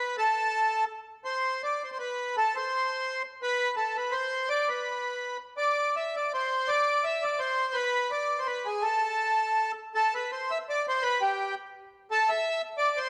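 A solo accordion, reedy, full and airy, sits up front in a moderate recital hall reverb, which gives this short cut from a longer piece a sense of space. It is a nostalgic, whirling musette in 3/4 with a gentle swing and a rubato feel, the melody staying in a narrow upper-middle range. The opening material returns through the first 9.9 seconds before a contrasting passage carries it to the close.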